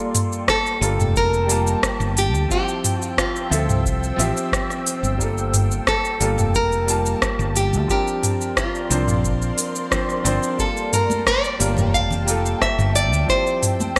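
Sunset chillout in G dorian at 89 BPM, this relaxed, warm excerpt moves at a straight 4/4 pace over a cycle of Gm9, a rootless Dm11 and C9sus4 chords. A clear, slightly boxy baby grand piano with delay and an ethereal, airy pad with ensemble chorus and a slow, sustained swell of detuned tones open together at the start, the pad hovering high and mellow behind the keys. A deep house drum kit with smooth hats, cabasa, rim click and toms sits up front in gated reverb, joined at 0.5 s by a dry, deep, tape-warm electronic kick and by a bright, fingerpicked nylon-string guitar carrying the melody up front with fresh strings and its own delay. A dark, round, punchy fingered electric bass enters at 0.8 s and anchors the low end. Congas and bongos played with hard hands arrive in the background at 11.1 s, adding a bright acoustic accent near the close. The bright 1980s-style digital production is bathed in a moderate plate reverb.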